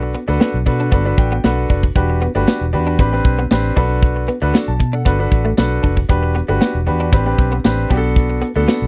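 Late-night and danceable, this short excerpt of early-eighties boogie funk moves at 116 BPM in a straight 4/4 in E minor, cycling through Bm7, Gmaj9, Em7 and Am11 in a dry, close 1970s-style studio sound. An up-front modern drum kit with a tight kick and medium-tuned snare drives the groove beside a dark, round, foam-muted fingered bass, while a clear, intimate grand piano, its action noise audible, accompanies and plays a fill from 0.9 to 2.0 seconds. A bright, twangy, compressed clean electric guitar picks a riff through ensemble chorus, and a jingly tambourine joins quietly at 2.5 seconds.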